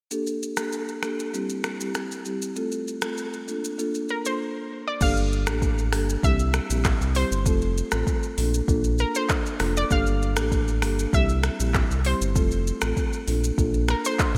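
Afrobeats excerpt with a sunny, joyful feel, where mellow, woody soft-mallet marimba and an electronic afro-pop drum kit with a deep kick, metallic hats, snaps, claps, shaker and gated reverb open together, a warbling vintage analog pluck with chorus carries the melody from 4.1 seconds, and a round, dark analog bass sits up front from 5.0 seconds, all framed by bright 1980s-style digital production.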